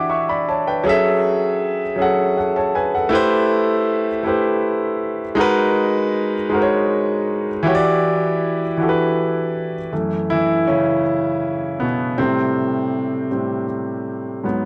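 A clear, intimate grand piano plays alone through this sultry, late-night R&B fragment in a straight 6/8, its long sustain and audible action noise sitting up front in a dry, gritty recording with transformer saturation and a touch of light reverb, moving through lush ninth chords like Em9, F#m9 and Am9 before settling into a new passage at 9.9 seconds.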